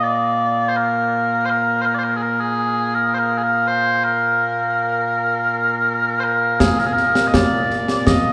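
Mellow, sweet small bagpipes carry a continuous, vibrato-laden solo melody up front in this proud, ceremonial Scottish pipe tune in 3/4 at 82 BPM in Bb mixolydian, joined at 6.6 s by concert snare and bass drum with bright cymbals, all set in a wet, resonant church reverb within a short cut from a longer piece.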